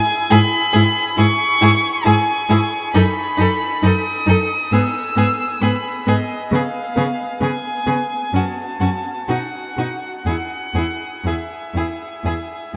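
A vast, echoing cathedral wash surrounds this excerpt from a slow, lyrical romantic movement for string quartet in E major, tuned to A4 = 444 Hz, moving at 60-69 BPM with a rubato feel. The first violin carries the melody from the start with a smooth, vibrato-laden tone placed up front. From 0.3 seconds a focused second violin adds a second line, a distant viola supplies expressive accompaniment with portamento, and an even, rich cello anchors the bass, all bowed by single players over harmonies that move from E/G# through B/F#, C#7, F#m and B before the chords fall away at 10.3 seconds.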